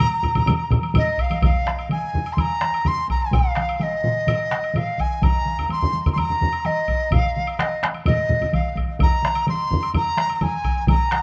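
Close-miked solo taiko drums, struck with heavy sticks, stand out most as they enter at 1.2 seconds and drive this powerful Japanese traditional taiko ensemble piece at 127 BPM in a straight 4/4. Above them, a large dizi carries the melody in a Bb suspended pentatonic mode, its bamboo tone airy and buzzing from the membrane, with a crisp attack and vibrato. Three taiko ensemble parts, also played with heavy sticks, fill out the percussion: two sound as if captured in a small room, and the third comes across compressed and saturated. A woody woodblock sits low in the mix, heard in a live room. A huge ambient reverb with a 4.8-second decay lends the driving performance a vast sense of space, and the brief fragment, cut from a longer piece, ends at 11.2 seconds.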